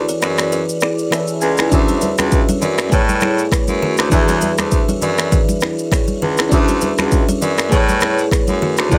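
Heard in a moderate small room, this sunny, breezy afrobeats excerpt opens with a short break in which a glassy FM electric piano, treated with chorus and plate reverb, plays a fill from 0.5 to 1.7 seconds. A raspy baritone saxophone, gritty and punchy with vibrato, carries the bass line up front. A buzzing kalimba repeats a woody, thumbnail-plucked riff through a digital delay. The electronic afro-pop drum kit also sits up front, with a deep kick, finger snaps, rim clicks and shaker in a light sixteenth-note swing. Congas with a thick skin and hard hands join at 1.7 seconds. The harmony moves between Dmaj9 and Amaj9, coloured by the piano's bell-like attack and warbling vintage tone.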